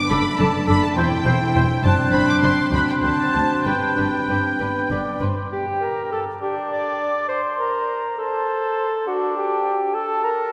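A quick, cheerful and lively classical-period orchestral movement in 6/8 at 68 BPM (dotted quarters), played with rubato in G major, opens with two intimate, soft-attack violin sections bowing sul tasto with vibrato on the melody and a second line, while a very quiet viola section accompanies, a floating cello section in the background and a dark double bass section hold the bass, and mellow French horns sustain chords in the background; a pure, straight-toned concert flute, a cor anglais with light vibrato and a present clarinet add second lines, and after the strings and horns stop around 5.3 s these three winds carry on alone as the music shifts to G minor from 5.5 s, everything bathed in a wet church reverb until 10.5 s.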